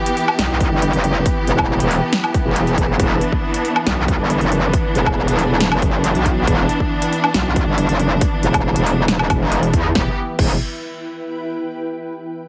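A clear, bowed studio string section holding sustained chords with vibrato and a blurred, detuned granular cloud pad in the background open this heavy, menacing half-time wobble dubstep fragment, both pumping with the sidechain, before an overdriven big-room drum kit of punchy snare, crisp hi-hats, crash cymbal and woodblock arrives, soon followed by a layered electronic kick, and an aggressive, metallic FM wobble bass, distorted and thickened with chorus, sits up front, the strings stopping at 10.2 s while the pad lingers until 11.7 s within a heavily compressed, radio-like sound touched with light reverb.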